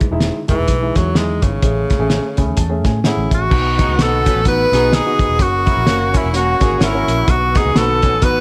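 Joyful and danceable, this uptempo 1960s-style soul cut moves at 127 BPM in 4/4 with a swung eighth-note feel, lifted from a longer piece. A cloth-damped drum kit sits up front with a thuddy, muffled, saturated sound, a fat snare, tight kick and dark cymbals, while a foam-muted fingered electric bass adds a round, punchy low end from 0.1 seconds. A dark, woody upright piano, slightly detuned with audible action noise, carries the accompaniment over the opening Emaj7 and Amaj7 changes and plays a fill from 2.1 to 3.5 seconds. A bright tenor saxophone with vibrato leads the melody from 0.5 seconds, and when the harmony shifts to B and F# at 3.5 seconds a very quiet, flute-like tonewheel organ with key click brings in sustained chords, joined by a tight horn section on a second line and a slightly broken-up, compressed guitar riff in the background. Near the end a very quiet vibraphone with soft mallets adds a metallic, ringing second line, all under light reverb.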